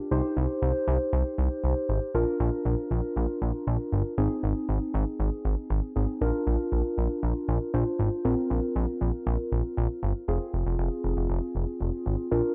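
Wistful yet upbeat, this short synth-pop excerpt moves in a steady, straight four-beat pulse. Muted, felt-like synth keys carry the accompaniment in the middle register, their soft, intimate tone touched with chorus and a filter sweep, with each note starting quickly and then decaying. Beneath them, a fat analog bass sits up front, thick and nasal with a saturated, detuned edge, its notes plucked by the filter yet sustained. The harmony drifts through Cm, Bb, Ab and back to Bb, settles on a Bbsus2 around 8.2 s, then turns to Fm as a new section begins at 10.3 s. A moderate plate reverb wraps both parts in a dark, warm production.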